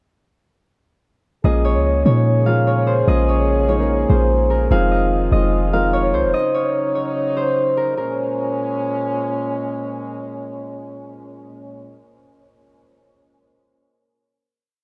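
A looping, thumb-plucked concert harp melody rings up front with delay in this eerie, hard-hitting hip hop piece in Bb minor at 147 BPM in a half-time feel, repeated like a sampled loop over a Bbm7, Fm7 and Ebm7 progression. A boomy, sine-like 808-style bass with fast attack and pitch slides pushes long sub-bass notes beneath a mellow, boxy grand piano playing open-voiced rhythmic chords, both dropping out around 6.3 seconds. A distant dark brass section with light vibrato holds a sustained pad through the final Bbm7 chord to 12.0 seconds, in a dry mix.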